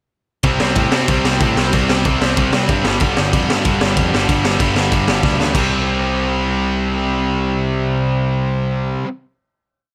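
A rowdy, upbeat burst of punk rock, this short complete piece charges ahead in a straight four-four feel. An up-front overdriven electric guitar drives eighth-note power chords, backed by a scooped, compressed distorted guitar in the background and a very quiet, double-tracked fuzz guitar letting chords ring. A growly, picked electric bass pushes eighth notes underneath, while a raw garage drum kit with a punchy kick, high-tuned snare and crash cymbal plays a two-step groove with a gritty, saturated, rolled-off top. The riff moves between C5 and G5 chords until a drum fill at 5.2 seconds, after which the drums stop and the band lands on a final C5 chord at 5.6 seconds that rings out to about 9 seconds. The sound is dry, with little reverb.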